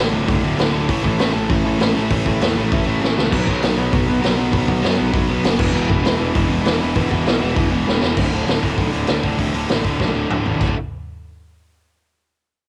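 A dry, lo-fi home cassette recording captures a short, energetic and rebellious burst of straight-ahead punk rock, cut from a longer piece. A compressed, overdriven electric guitar riffs in the background while a bright, tight distorted guitar picks its own riff, over a growly fuzz bass and a gritty, saturated garage drum kit set up front with a boomy kick and rolled-off top. Drum fills at 3.0 and 10.0 seconds punctuate the riffs, and another at 7.9 seconds drives the power chords into a new section at 8.2 seconds.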